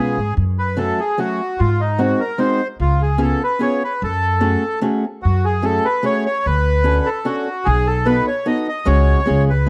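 A bandoneon, fingerpicked archtop guitar and upright bass all start together at 0.0 seconds in this bittersweet, nostalgic musette excerpt, moving in a straight 3/4 at 148 BPM in F# harmonic minor. The bandoneon carries the melody with a reedy, dark, smooth voice placed up front, touched by a slapback echo. Beside it, the guitar supplies bright fingerpicked accompaniment with audible finger squeak, while the upright bass plays woody pizzicato lines on steel strings, also close and present. The harmony passes from F#m through G#7 and C#7 to F#madd9, then on to Dmaj7, B7 and a closing C#sus4 at 8.9 seconds. The sound is a dry, close 1970s-style studio recording with small room ambience, and the fragment is cut from a longer piece, ending at 9.7 seconds.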